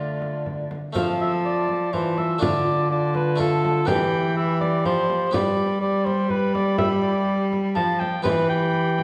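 A smooth-topped cor anglais with light vibrato carries the second line up front in this courtly, solemn renaissance-style consort dance in 3/4 at 124 BPM, cut from a longer piece, over a nasal, gut-string bowed cello and a bright, plucked harpsichord, with a distant, roomy trombone, an airy, wooden alto recorder with chiff singing the melody in the background, and a small frame drum entering at 0.2 s, as the harmony moves through Dm, F, Em and G in a dark, warm recital-hall reverb.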